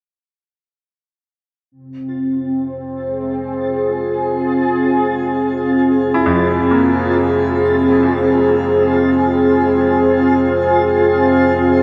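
A resonant, sweeping pad sits up front, holding sustained chords between C4 and Ab4 on an F minor harmony from 1.7 seconds. Its detuned sawtooth and sine layers with a sub octave slowly evolve through a filter swell, thickened by chorus and a shimmer reverb. This short, dark, desolate ambient drone passage moves in free time, tuned to A4 = 445 Hz. Beneath it, a deep, ominous drone fades in and rumbles in the background from F2 to F3, colored by a phaser. A reversed, granular texture hovers dreamily on F4 with soft swelling attacks. From 6.1 seconds, a brilliant concert grand piano adds present arpeggios with deep bass, trailed by delay and shimmer, all bathed in a huge, wet reverb with a long 8.9-second decay.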